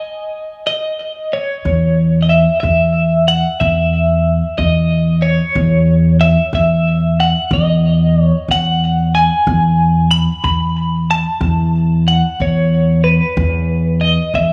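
Indie folk with a nostalgic mood and a building arrangement in a slow 6/8 at 62 BPM in E major, this excerpt opens with a bright, twangy, clean-picked twelve-string electric guitar carrying the melody alone, its compressed tone shimmering with tremolo and digital delay, until a woody pizzicato upright bass enters up front at 1.7 seconds to anchor an E5 chord, all set in a small room ambience.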